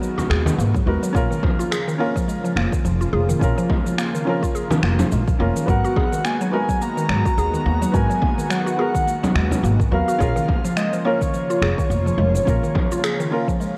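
Heard through worn, warbling cassette tape with light reverb, this meditative, mystical organic downtempo excerpt swings gently as a soft, felt-muted upright piano with audible action noise and delay and a smooth, detuned analog pad in the background both pump against the deep, overdriven electronic kick up front, while woody pizzicato upright bass, round FM mallet-like pluck arpeggios with chorus and delay, gritty electronic shaker and finger snaps, and a distant frame drum fill out the groove before a breathy, flute-like synth lead with vibrato and lush chorus enters at 5.7 seconds.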